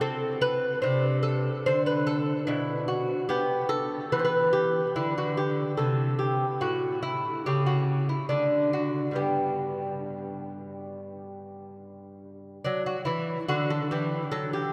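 The rhythm moves in an unhurried 4/4 at about 71 BPM, with uneven beats and a free, rubato sway that keeps this baroque-style classical dance serene yet gently lilting. A solo lute carries the piece from 0.0 to 14.7 seconds, fingerpicked on nylon double strings, some doubled at the octave, across a range from G2 up to C5. Its tone is bright and delicate, placed up front, with a diffuse ambient delay trailing behind the notes. The harmony sits in G major, tuned slightly high at A4 = 441 Hz, drifting through colourful chords such as Cmaj7, Amadd11/C and Bmadd11 before settling through D to G, then turning back to D at 12.7 seconds as the opening section begins again. A cathedral reverb with a long 6.4-second tail soaks the mix, giving the short passage, cut from a longer piece, a dreamy, floating quality.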